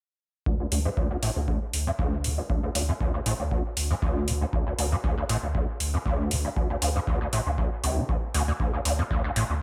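An echo-heavy mix, wet with spring reverb and digital ambience, carries this driving, trippy acid house fragment at 118 BPM in D minor, with a light swing on the 16ths. Up front, a squelchy, gritty square-wave acid bass riff runs through distortion, ensemble chorus and dub echo under a filter sweep from 0.5 s, while a round, sine-based sub bass pumps with sidechain compression beneath it under its own filter sweep. A deep, tape-warm kick and metallic analog hi-hats, re-recorded in a small room, hold the 4/4 pulse until the kick stops at 9.2 s.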